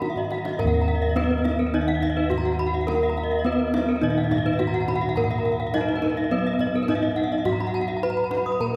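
The bronze metallophone melody rings out up front, struck with a wooden mallet, its paired tuning producing shimmering beats in a close, dry and full sound that ranges from Cb4 to Cb5. This hypnotic, shimmering piece of Balinese gamelan in Eb pelog moves at 105 BPM in a straight 4/4, and the clip is cut from a longer work. Two more metallophones play arpeggios with horn mallets: one sounds boxy, as if in a small room, while the other is bright and dry, and both shimmer with their own paired-tuning beats. A fourth metallophone sits in the background with a low accompaniment, and dark, smooth bossed gongs carry the bass with a round, beating tone. The kendang, tight and distant with hard hands, opens with a short drum fill from 0.2 to 0.6 seconds before settling in behind the ensemble, and the whole performance is bathed in a long cathedral-like reverb from a church or concert hall.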